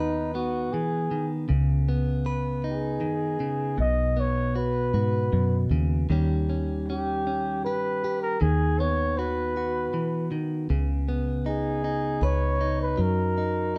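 A dark, intimate production with light reverb frames this short passage from a longer acoustic folk-pop ballad, moving at 78 BPM in a gentle 3/4 with a melancholic mood. Up front, a breathy flugelhorn carries the melody in a whispered, jazz-tinged voice with soft attacks, light vibrato and a plate reverb. Beneath it, a bright, clean, compressed electric guitar, picked and recorded direct, and a warm, foam-muted fingered electric bass move through chords such as Emaj9/D#, C#sus2 and G#m7/B before settling on F#6.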